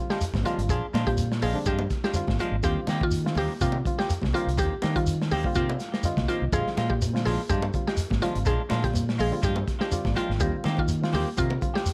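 A lightly reverberant, hypnotic and driving afrobeat clip at 124 BPM in Bb mixolydian, built on a crunchy, saturated breakbeat kit up front, a round, punchy fingered bass, grainy shekere, ringing high-tuned congas in the background, woody FM synth plucks arpeggiating with chorus, dark semi-hollow guitar stabs through a phaser, and a barky, reedy electric piano that comps over Bb7 and Eb6 and adds short fills around 5.1 and 9.7 seconds.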